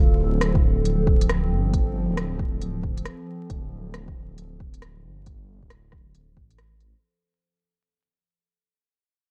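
A swung 16th-note groove at 136 BPM in 4/4 drives this rainy, wistful future garage excerpt, where a deep, up-front electronic kick and smooth hi-hats with rim clicks sit under a dark, rumbling detuned saw bass with tube saturation, while a warbling, nostalgic lo-fi pad holds sustained F/D chords through chorus, phaser and sidechain pumping, all wrapped in light digital ambience and vinyl crackle as the whole 7-second passage fades out.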